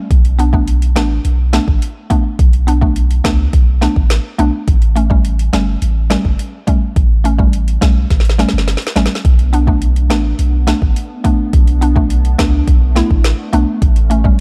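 A dry, dark production frames this hypnotic, tough dancehall excerpt, with an up-front electronic drum kit pairing a deep kick and woody snare with metallic hats, beside a punchy sine sub bass whose attack drops in pitch. A round, warbling FM pluck with a mallet-like tone and chorus pumps against the sidechain from 0.4 seconds, moving between Bm7 and A7. After a drum fill at 8.1 seconds, a hollow, flute-like pad with ensemble chorus slips in at 9.2 seconds, sitting softly in the background and also pumping.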